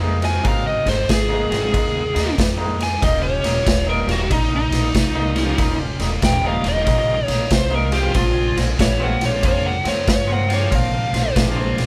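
Recorded live in one room with light reverb, this soulful, gritty electric blues shuffle at 94 BPM in Eb mixolydian has a biting, overdriven lead guitar soloing over a slightly broken-up tremolo riff from an electric guitar through a small old amp, woody pizzicato upright bass, a punchy, saturated garage drum kit of kick, snare and ride up front, distant jazz-style horn stabs in the background, and a shouting tonewheel organ with key click and slow rotary speaker that joins at 1.5 seconds.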